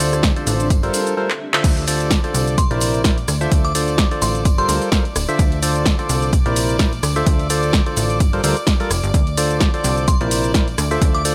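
Soulful and energetic, this piano house cut rides a swung 4/4 groove over a looping progression of Dm7, Gm11 and C9 chords. An overdriven electronic kick sits up front, joined by a punchy analog drum machine with crash, handclaps, hi-hat, rim click, shaker and snare, while a distant, very quiet tambourine adds a large-room shimmer behind them. A plucky, funky analog bass with a fast, decaying attack anchors the low end, and a hollow, organ-like stab riff with chorus and delay pumps prominently against the beat. In the background, a rich chamber string section holds sustained, lightly vibrato chords, and a cloudy granular pad blurs the opening before dropping out at 1.2 seconds. A short drum fill and band accent mark the turn at about 1.5 seconds, and a glassy FM bell with warbling tremolo and chorus drifts in at 2.6 seconds and again near the end of this excerpt.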